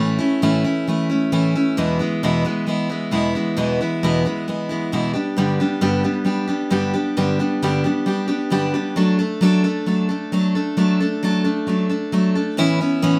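Rock excerpt at 133 BPM in a straight 4/4, where a lone picked steel-string acoustic guitar, full-bodied and up front, moves through A, E, G and D/F# before settling on Aadd9 at 12.6 seconds, its nostalgic, hopeful mood framed by moderate studio reverb and the feel of a band playing live in one room.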